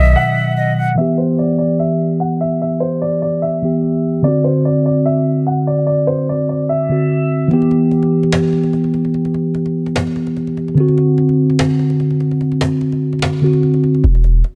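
This melancholic, eerie half-time trap excerpt opens with a breathy flute with vibrato that drops out at 1.0 seconds. This leaves a dark baby grand piano, filtered and echoed with delay, to carry the melody over a clean tine electric piano coloured by analog chorus, while a filter sweep runs through the first section. At 7.5 seconds the piano gives way to a woody, close and dry cajon with faint snares and a gritty 12-bit sampler texture, all set in a small room with light reverb. The punchy, heavy 808-style bass, heard only for a moment at the start, returns at the very end on a closing E5 chord.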